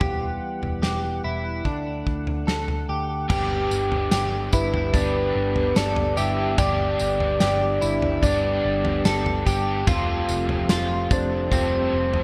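Dream pop at 73 BPM in G major, blissful and floating, cut from a longer piece: a mellow tonewheel organ holds sustained chords through chorus vibrato and a slow rotary speaker. A dark, clean electric guitar plays picked arpeggios through analog chorus and digital delay over a round, foam-muted vintage picked bass and an up-front loose indie drum kit of kick, snare, toms, tambourine and crash, its top rolled off and bathed in gated reverb. At 3.3 s, as the chords move from Emadd9 and D to G, a bright, compressed overdriven guitar joins with harmonic tremolo and ensemble chorus, and at 4.5 s a soft, full octave-layered synth lead with triangle, sawtooth and sub-octave tones carries the melody through chorus and delay, all set in a lush hall reverb and small room ambience within a bright 1980s-style digital production, with the harmony turning to Fadd9 at 9.9 s.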